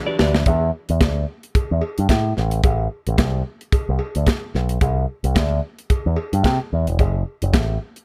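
Close, reverb-light sound frames this sultry, danceable disco excerpt in E minor at 110 BPM with a light 16th-note swing: a very quiet grand piano appears only in the first 0.5 s while an airy, polished funk kit with a tight kick and medium-tuned snare opens on a drum fill, a bright, amped picked electric bass with an envelope filter sits up front beside the drums, and a metallic cowbell rings from a distant, large room over chords moving from E7(no3) through Amadd9 and Cadd9 to F#m.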